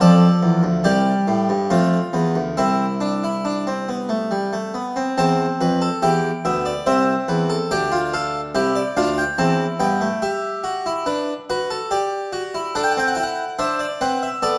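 A resonant recital-hall reverb surrounds an up-front, full-bodied Flemish-style harpsichord, its plucked tone doubled across two sets of strings in this brief passage cut from a longer work. It is a solemn, contemplative baroque-style four-part fugue in triple metre with a straight feel, played by the harpsichord alone across a range from C2 to A5. The harmony moves through chords such as Dm69, C/E and G5/D, with a new section beginning at 5.2 seconds and the music closing on a D7 at 12.7 seconds.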